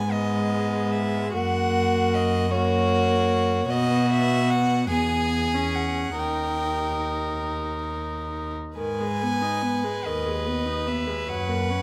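A rubato 6/8 pulse of 45-52 BPM in dotted quarters sets this slow, elegiac romantic movement for string quartet in G# minor, tuned to A4 = 439 Hz and cut from a longer piece. The first violin sings a pure, floating melody while the second violin, placed up front, carries a second line beneath it; the viola, with light vibrato and an intimate closeness, fills the accompaniment, and the up-front cello anchors the bass, all four bowed sul tasto with soft attacks. Close, detailed microphones and light reverb frame the solemn progression from G#m through F#, B5, E and D# before returning to G#m at 8.8 seconds.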